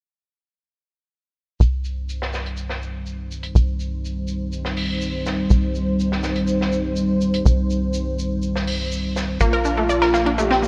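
At 1.6 s this dramatic, driving melodic techno excerpt in C minor begins at 123 BPM, with a deep, moody analog pad holding sustained chords under chorus and vintage 12-bit sampler grit, a tight, nasal sequencer bass, and a dark, smooth acoustic drum kit of hi-hat, shaker and snare sitting low in the mix. The harmony rests on C minor until 9.4 s, when it moves to Bb and two parts arrive: a punchy, detuned unison pluck spinning delayed arpeggios up front, and a round, brassy synth lead with chorus carrying a brief melody. A lush hall reverb and bright 1980s-style digital production frame the sound.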